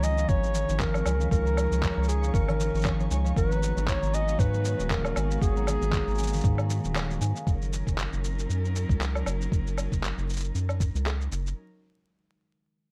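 Light reverb and a layer of vinyl crackle frame this delicate, warm folktronica excerpt in F# major, moving at 117 BPM in 4/4 with a gentle sixteenth-note swing. A mellow, jazz-style clarinet carries the melody with subtone, scooped notes and light vibrato, roughened by vintage 12-bit sampler grit and trailed by delay. In the background, a bell-like celesta with hard felt hammers adds a sweet second line, and a thumb-plucked concert harp rings out arpeggios. A bowed string quartet holds expressive chords with portamento, while a flickering, granular texture hovers high above. Underneath, a round, deep analog bass sits up front beside a muffled, pitched-down kick and a compressed kit of electronic shaker, handclaps and woodblock. The chords move from C#add9 to G#m7 before the band hits an accent at 7.0 seconds and breaks briefly; from 7.5 seconds, the strings, bass and percussion carry on over F#6.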